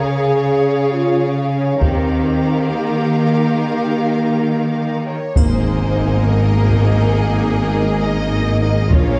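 This cinematic orchestral cue opens on a Db chord with bowed strings and horns together. A lush violin section carries the melody with soft-attacked vibrato over a focused, distant second violin line and background violas. A roomy French horn section holds sustained chords, and an up-front cello section lays down a smooth bass. At 1.8 seconds the harmony moves to Ebadd9, the double basses make a brief appearance, and a taiko ensemble enters behind the orchestra, struck with hard sticks in a heroic, relentless 6/8 at 68 BPM. At 5.4 seconds the music settles on Absus2 as a fuller string section, the returning double basses, a mellow, punchy tuba and a faint, bright triangle join, together with a huge but very quiet impact. The scoring stage reverb and dark, warm production give the cut a broad cinematic weight.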